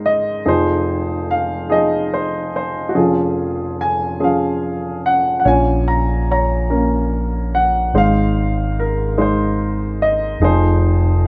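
A warm, smooth grand piano with a vintage character opens this intimate, hopeful acoustic folk-pop ballad, carrying the melody up front at a slow 48 BPM in a straight 6/8, moving through Fm7, Db/F, Bbm and Ab in Db major. At 5.5 seconds a dark, round and punchy fingered electric bass enters, amped and close, anchoring the low end beneath the piano. Light reverb gives the sense of a band playing live together in one room, and the piece is cut from a longer performance.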